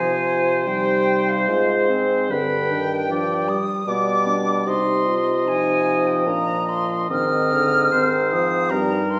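In a rubato 3/4 at 75 BPM, this serene and tender slow romantic movement for wind quintet in C minor unfolds over a brief fragment of a longer piece, moving from Fm/C through G and Cm to Abmaj7. An airy silver flute carries the expressive melody up front with vibrato and a soft attack, while a clear oboe with light vibrato sings a second line that sounds somewhat distant yet present. Beneath them a mellow French horn and a background clarinet supply accompaniment, and a warm bassoon anchors the bass, all bathed in a wet recital hall reverb.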